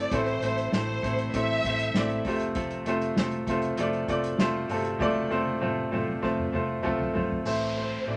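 A lush, bowed violin section with soft-attack vibrato sings up front over a clear, woody upright piano, a bright, scooped clean electric guitar riff in the background and a dark, round, foam-muted fingered electric bass, opening this uplifting, hopeful piano-driven pop excerpt in F major at 98 BPM in a straight 4/4. A soft-mallet drum kit with a boomy kick, medium-tuned snare, hi-hat and toms joins at 0.1 seconds with an airy, polished sound. The harmony moves from Am to F at 2.3 seconds, and a drum fill runs from 5.0 seconds. The violins return at 7.5 seconds alongside an electronic downlifter as the chords settle back on Am, with a wet studio ambience around the parts.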